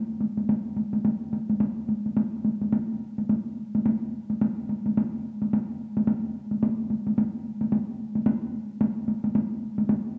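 Ceremonial and powerful, this cut from a longer Japanese traditional piece features solo taiko drums struck with hard sticks. They enter at 0.2 s, sit up front, and play in 4/4 at 108 BPM with a swung sixteenth-note feel, gradually speeding up and moving into a new section at 3.3 s. The acoustic drums carry a small-room closeness, set within a lush recital-hall reverb.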